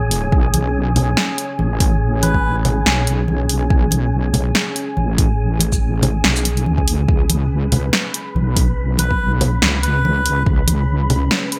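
A dark, moody ambient pad, a heavy sawtooth wobble bass with chorus and an airy, wind-like tuned noise layer open this meditative, cavernous deep dubstep excerpt at 142 BPM in a swung half-time feel, joined almost at once by an up-front deep house kit of hi-hat, shaker and punchy gated-reverb snare, a layered electronic kick and close acoustic congas, while a reedy, nasal melodica drifts through dub echo at 2.2 s and again at 9.0 s, all set in light reverb with bright 1980s-style digital production.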